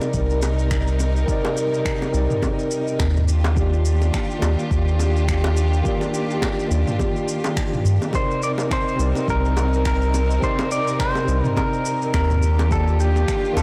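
Relaxed and wistful, this sunset chillout excerpt sets a worn, lightly overdriven tine electric piano with digital delay over dark, bowed chamber strings, a round, up-front analog bass, a deep electronic kick, a tape-warm deep house kit of finger snaps, shaker, toms and soft-clipped snare, and tight, high-tuned bongos, moving between Cm7 and Ebmaj9 in a swung 4/4 until a bright, twangy clean electric guitar with delay takes the melody at 8.2 seconds, all in a blown-out, overdriven recording with light reverb.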